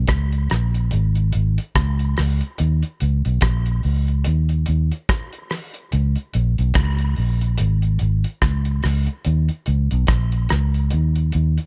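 Heavy and meditative, this dub reggae excerpt sits at 72 BPM in 4/4 with a swung sixteenth-note feel and tuning at A4 = 444 Hz. A vintage, foam-muted fingered electric bass carries the low end from Ab1 to Eb2, its amped tone dark and round and placed up front. A damped 70s acoustic drum kit of hi-hat, kick drum and rim click sits a little lower, dry and smooth with a tight kick and a rolled-off top, in a nearly reverb-free sound.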